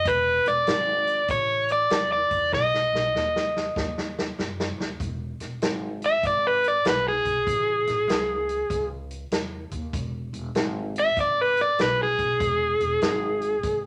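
A swinging 97 BPM shuffle in 4/4 drives this rollicking, soulful electric blues in E major, where an up-front, overdriven, picked electric guitar carries the melody and takes a solo from 5.0 seconds, a woody, growly pizzicato upright bass sits low beneath it, and a big-band drum kit with a punchy kick and a natural big-room sound plays a fill from 2.5 seconds, the whole set in moderate studio reverb.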